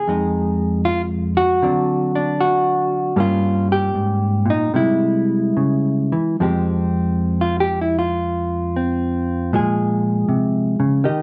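Swung eighths and a loose rubato feel carry this smoky, cool solo jazz piece in F minor at 77 BPM in 4/4, with the tuning set to A4 = 437 Hz. A single hollow-body electric jazz guitar sits up front, its dark, clean, fingered tone compressed and framed by the moderate reverb of a large studio room as it moves through Fm7, D7, Gdim and C before stepping into a solo passage over Fmadd9 and Bbm7 from 6.4 seconds. The recording feels live in one room and is cut from a longer piece.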